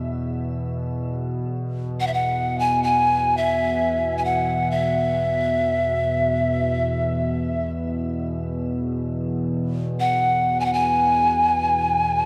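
Peaceful and calm, this short cut from a longer piece of meditative world music floats in free time with a dark, unhurried stillness. A deep, moody ambient pad holds a low drone from the very start, its detuned sawtooth and sine layers with a sub octave giving a mellow, thick body softened by chorus and its own reverb. At 2.0 seconds a breathy bamboo pan flute enters up front with the melody, sitting high above the drone in a narrow range. Its tone carries audible chiff and tongued note starts, vibrato, and lifted highs, all bathed in a shimmering reverb. The whole recording sits in a wet, cathedral-like space with a long 4.5-second decay, lending the production a warm, dusky depth.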